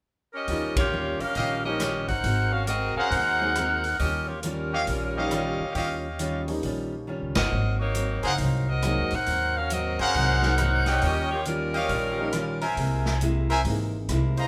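A bright, loose saxophone section opens this brassy big band swing fragment at 0.3 s, carrying the melody with vibrato, and the rhythm section joins almost at once. A pizzicato upright bass with a woody tone anchors the low end, while a picked steel-string acoustic guitar, finger squeak and all, and a warm, polished upright piano fill in the harmony over Eb9 and Ab9 chords before closing on a C7alt. The swinging drum kit sits distant and roomy, with ride cymbal, hi-hat, rim click, a medium-tuned snare and a punchy kick, plus a short fill around 7.1 s. From 1.4 s an up-front trumpet section adds stabs, and the band hits accents together early on and again midway. A moderate large studio reverb places the ensemble in a spacious room.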